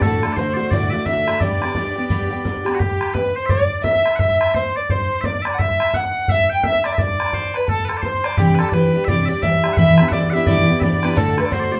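A cheerful Celtic hornpipe in G major at 172 BPM with a swung 4/4 lilt opens with a dark, woody fiddle carrying the melody with light vibrato, piercing bagpipes holding a continuous second line, a boomy bodhran, and a shimmering, octave-doubled picked twelve-string guitar that drops out at 2.8 seconds and returns at 8.4 seconds, all set in a small, reverberant room.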